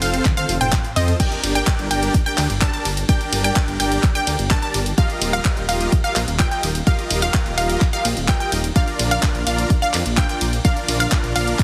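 A steady, straight pulse drives this uplifting, triumphant festival progressive house passage, cut from a longer piece, with a punchy, up-front electronic kick arriving at 0.3 seconds alongside a drum fill that runs until 1.2 seconds. The house drum kit fills out the groove with handclaps, hi-hat, ride, crash and toms, its layered, tape-warm sound re-recorded in a large room. A huge, thick supersaw carries the riff with vibrato on its sustained tone, while a bright, lush unison pluck spins arpeggios higher up, shaped by a filter sweep. Both share sidechain pumping and tape echo. Underneath, a mellow, saturated detuned saw bass with chorus sits up front, moving through F, G minor, E-flat add nine and B-flat. Light reverb and a heavily compressed, radio-style finish give the whole mix a dense, punchy sheen.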